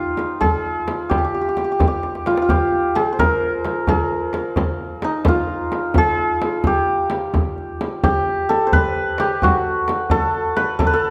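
Persian modal ensemble music in a melancholic, soulful 6/8 at 87 BPM, where a shimmering, ringing hammered santur carries the melody up front between Eb4 and C5 over a deep, large frame drum played with soft hands and a tombak sitting in the background, with a drum fill at 2.0 seconds and a new section arriving at 8.0 seconds, all set in a moderate recital-hall reverb.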